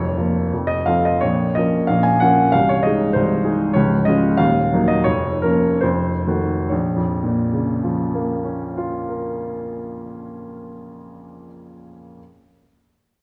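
A woody upright piano, natural in tone and placed up front, carries this brief romantic character piece on its own for its full 12.2 seconds. The mood is brooding and passionate, set in Bb minor and 2/4 with a rubato feel that lets the tempo drift between 65 and 100 BPM. The harmony moves from Bb minor through Ab, Db and Eb minor before an F7b9 pulls back home, while the playing spans a deep register up to the middle-high range. A slowing stretch from 3.1 to 6.7 seconds closes the opening passage, and a new section begins on Bb minor at that point. Heavy recital hall reverb and a dark, warm production wrap the piano in a moody glow, in what sounds like a fragment cut from a longer work.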